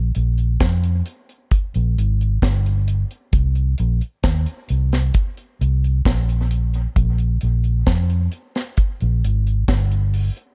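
A round, foam-muted electric bass opens this dry, meditative dub reggae fragment at 66 BPM, and a reggae drum kit of hi-hat, tight kick and high-tuned snare enters at 0.1 seconds. Both parts sit up front, the amped bass holding a low, dark register while the drums stay close and dry. The whole brief cut, ending at 10.5 seconds, has a deep, warm feel with very little reverb.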